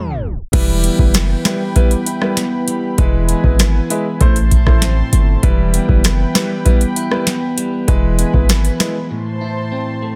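A dense, heavily limited modern master with little reverb opens on a tape stop before this hypnotic, tough dancehall fragment settles into a straight 98 BPM groove in E minor. At 0.5 seconds a booming analog drum machine, up front and tape-warm, lands with a deep kick, tonal snare, rim click, metallic hats and crash, alongside a punchy, heavy 808-style bass whose sine tone carries a noise layer, fast attack and decaying tail. A polished grand piano plays accompaniment over the chords, which circle between E minor, E major and A minor. Throughout, a slightly broken-up, picked electric guitar runs compressed arpeggios through tape echo, while a smooth, detuned sawtooth pad holds sustained chords under chorus and sidechain pumping. At 9.1 seconds the break strips things back to the guitar and pad over an A minor chord.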